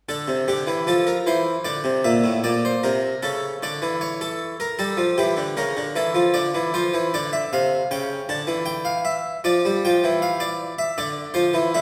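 Bathed in a lush scoring-stage reverb with a faint mains hum in a church or concert hall, this short fragment of a solemn, introspective baroque-style suite movement in D minor at 77 BPM in 4/4 features a brilliant, up-front Flemish-style solo harpsichord with octave strings, its plucked tone spanning A2 to A5 as it moves with rubato through Dm, Bbmaj9#11 and Gm13, then a C#dim at 7.9 seconds before settling back on Dm.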